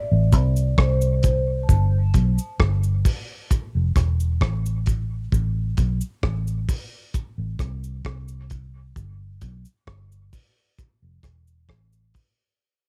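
Spacious and deep, this slow dub reggae fragment in A minor moves at 66 BPM in a straight 4/4, cut from a longer piece and fading out across its full 12.6 seconds. A soft-mallet vibraphone opens with a brief, mellow, ringing phrase between C5 and A5, its slow motor vibrato and boxy small-room tone softened by cassette tape and trailed by dub echo before it stops at 1.7 seconds. From there the track settles into a break carried by a vintage muted fingered electric bass, already underway from the start, dark, round and punchy, sitting up front in its low register from E1 to C2. A cloth-damped, thuddy drum kit plays hi-hat, a tight kick and rim clicks with a rolled-off top and a cassette-tape grain. A faint cabasa adds a dry, acoustic small-room texture underneath. The harmony alternates between A minor and chordless stretches, and the sound stays close and dry, with the intimacy of a home cassette recording.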